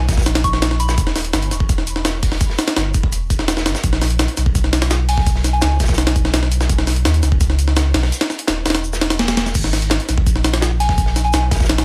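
Set in a small room ambience, this dark, frenetic drum and bass excerpt at 168 BPM in G# minor drives a thick, saturated sub bass and an up-front, compressed, pitched-up jungle sampler kit with a thumpy kick and high-tuned snare over a gritty, rolled-off breakbeat kit sitting in the background, while a soft, pure FM synth bell with chorus, phaser and dub echo chimes briefly at 0.4, 5.1 and 10.8 seconds.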